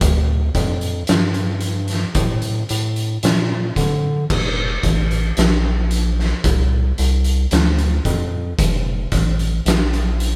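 A round analog bass sits up front, its overdriven tone deep and nasal, with a detuned, filter-plucked attack that sustains into a dark, sludgy low end across F1 to D3. This short excerpt, cut from a longer stoner and doom metal piece, moves at a crawling 56 BPM in a straight 4/4, and the mood is ominous and sludgy. An oversized, low-tuned acoustic drum kit plays throughout, also up front, with a punchy kick, a fat snare, hi-hat and crash cymbal sounding gritty and saturated in a bright stone room. Both parts play together from start to finish in a single section lasting 10.4 seconds. The band sounds as if it is playing live in one room, with light reverb adding a sense of shared space around the dense, crushing sound.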